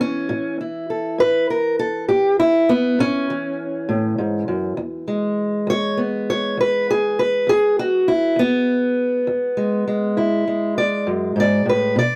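A dry, close studio sound in a 1970s style puts a lone fingerpicked steel-string acoustic guitar up front, its tone dark and boxy with a parlour-sized character. This is a short cut from a longer acoustic country blues piece, moving at 67 beats per minute in 12/8 with a straight feel. The mood is rollicking and gritty, rooted in E mixolydian. The guitar plays solo for the full 12.2 seconds, ranging from a low E2 up to D5. The harmony sits on A before shifting to E at 4.8 seconds.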